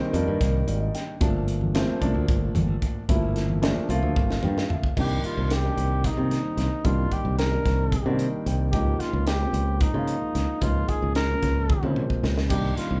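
Funky and driving, this electric jazz fusion excerpt in 7/8 at 223 BPM sets a growly, punchy electric bass and a crisp drum kit with a high-tuned snare up front, while a dark, mellow grand piano comps over Cm9 and Gm9 with fills, congas with hard hands tap in the background from 1.2 to 4.8 seconds, and a distant, roomy trumpet with light vibrato takes the melody from 5.0 seconds over Cm9 before the chords move to Db6, all played live in one room with light reverb.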